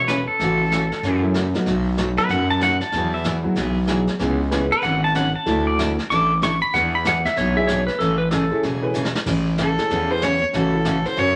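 Swinging and playful, this brisk western swing excerpt in A major moves at 189 BPM with a loping swung feel. A clean, up-front pedal steel guitar, played with fingerpicks and marked by slide and volume swells, carries the solo from the start over a thick, growling FM bass. A bright dreadnought acoustic guitar and a vintage brush kit with dark cymbals and a gritty, rolled-off top keep time beneath, and a woody, boxy upright piano with audible action noise joins at 1.2 seconds. After a drum fill at 9.0 seconds, a biting fiddle with light vibrato takes over the solo from 9.6 seconds. The chords travel through colorful sevenths and suspensions, and a moderate large-studio reverb and vinyl crackle lend the whole a warm, old-record glow.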